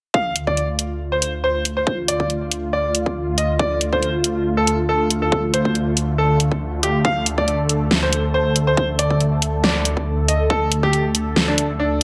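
A half-time 4/4 groove at 139 BPM with a light 16th-note swing drives this heavy, menacing wobble dubstep excerpt in D minor, built from a punchy, tape-warm electronic kick under a high-pass filter that stops at 10.9 s and a dubstep kit whose huge snare and hi-hat sit up front from 0.4 s. A thick, detuned sawtooth unison pad holds a sustained D minor chord with chorus, phaser and sidechain pumping, while a brilliant concert grand piano carries the melody between D4 and F5 through a dub echo. The whole piece sits in a moderate digital room reverb.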